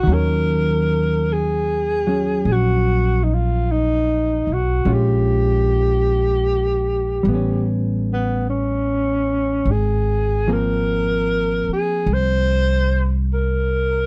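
A breathy alto saxophone carries the melody in this intimate, wistful jazz ballad, its mellow tone shaded with vibrato and scooped notes, placed up front yet carrying a distant, roomy quality of its own. The tempo is a slow 50 BPM in 4/4, with a gentle swing on the eighth notes that lets each phrase linger. An upright bass, played pizzicato on steel strings, sits equally up front with a woody, growly sound that anchors the low end. A hollow-body electric jazz guitar, fingered and clean with a dark, compressed tone, supplies the accompaniment slightly further back in the mix. The harmony moves from Ebm7 to Bbm7, then to A9 and Ab69, all three instruments playing throughout the 14.1-second passage, which is cut from a longer piece and captured with close, detailed microphones and little reverb.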